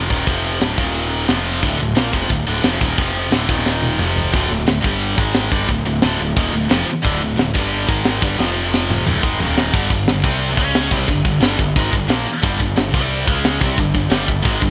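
A double-tracked, high-gain electric guitar opens this dark, epic heavy metal passage, cut from a longer piece, playing a bright, distorted picked riff in D phrygian alongside a fuzz-laden, punchy electric bass, with a tight acoustic drum kit entering at 0.1 seconds. The tempo is a driving 178 BPM in straight 4/4, and the riff circles through power chords on F, D and Eb before moving to G and G# and later to C and C#. The guitar and drums sit up front, the kit heard in a studio room with a high-tuned snare, a tight kick and a warm, rolled-off top across crash, ride, hi-hat and toms. Drum fills arrive at 3.7 and 8.4 seconds, marking the turns between three short sections. The bass is direct and amped, overdriven and warm in tone, beneath a bright 1980s-style digital production with light reverb and a small-room ambience.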